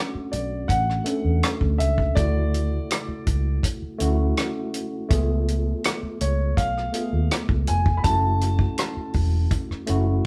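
A straight 4/4 groove from a dry, mid-forward soul drum kit with tight kick, hi-hat and rim click anchors this cinematic, bittersweet fragment of lush 1970s-style soul, where a dark, round, foam-muted fingered electric bass sits up front, a worn, slightly out-of-tune tine electric piano with light overdrive supplies chords moving through Bm7, Dmaj9, C#7b13 and F#m7, and an intimate concert grand piano, its action noise audible and its notes sustaining long, carries the high melody, captured as a band playing live in one room with moderate reverb.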